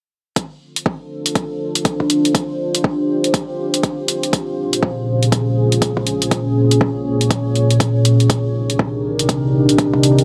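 A deep, moody ambient pad dominates this hypnotic deep house excerpt, its detuned sawtooth voices and sub octave blooming slowly into sustained chords from 1.1 seconds, warbling with chorus and washed in its own reverb while sidechain pumping makes it breathe against the beat. Alongside it, an overdriven electronic kick drum sits up front with a deep, gritty weight, its high-pass filtering keeping the low end tidy. A layered electronic hi-hat, also overdriven and re-recorded in a small room, joins the kick at 0.4 seconds and rides a swung sixteenth-note feel. The harmony drifts from Dm7 to Bbm7 and then Cm7, giving the phrygian colour a shadowy, vintage cast. A lush hall reverb wraps the whole mix in a dark, enveloping space, cut from a longer piece and ending at 10.2 seconds.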